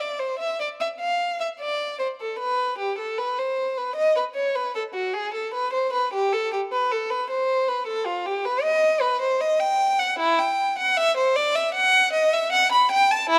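A rich, expressive solo violin carries this solemn, flowing excerpt from a baroque-style suite movement for unaccompanied violin, heard from start to finish across its 13.4 seconds. The single bowed player sits up front, playing with vibrato and portamento across a range from E4 up to B5. The tempo hovers around 77 BPM in 4/4, but the feel is rubato, so the pulse breathes freely rather than marking strict time. The key settles into E minor from 8.6 seconds, and the tuning rests at A4 = 443 Hz. Close, detailed microphones catch the instrument intimately, with a light reverb adding a touch of space around it.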